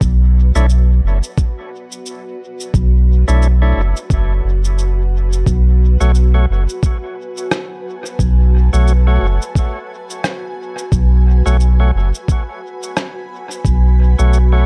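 Meditative and spacious, this ambient dub piece moves at 88 BPM in 4/4 with a swung sixteenth-note feel, drawn from a longer work and built on a dark, warm digital ambience. A granular cloud pad fades in from the start, holding blurred, evolving chords through built-in reverb, while a deep, round sub bass sits up front beneath it. An electronic kick drum gives a muffled, thumpy pulse, joined by a pitched-down cabasa and rim click that trail off into dub echo. From 0.6 seconds an overdriven tonewheel organ adds gritty, percussive stabs with key click and vibrato, its chords also thrown into dub echo. The harmony rests on Bm11 before shifting to F#m at 5.5 seconds, keeping the mood suspended and hazy.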